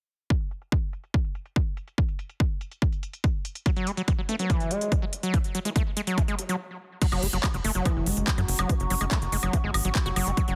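This excerpt from a longer psychedelic trance track opens at 0.3 seconds with an overdriven, heavy electronic kick sitting up front and a layered big-room kit of crash, handclaps, crisp hi-hats and woodblock, the kit run through a filter sweep over an Eadd9 harmony at 143 BPM in a straight 4/4. At 3.7 seconds a squelchy, gritty acid bass enters with a distorted, resonant sawtooth riff between E3 and F#4, pumping against the kick and trailed by delay. A very quiet, nasal wobble bass adds a second line from 4.3 to 6.6 seconds, and a brief stop follows just before the second section. From 7.0 seconds the harmony shifts to F#5 and the filter sweep moves onto the acid bass, while from 7.1 seconds a tight, punchy sequencer bass with a plucked, tube-saturated tone drives underneath. Late in the clip a chorused drone with moving overtones and a lo-fi, nostalgic pad with phaser and detuned warble sit softly behind the mix, giving the dense, heavily limited, driving master a hypnotic haze.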